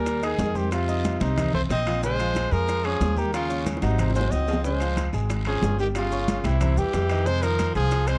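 A driving, fiery Afro-Cuban jazz excerpt at 184 BPM opens with a warm, lightly vibrato trumpet carrying the melody up front over a clear tenor saxophone second line with scooped notes, a natural-sounding concert grand piano with deep bass, and a woody, dark pizzicato upright bass. From 0.1 seconds, round low-tuned bongos, bright congas, ringing metal-shell timbales, a raspy guiro and grainy maracas sit in the background, with a drum fill between 3.7 and 4.6 seconds. The dry, close 1970s-style studio sound moves through rich jazz harmony from Abmaj9 to Fm7.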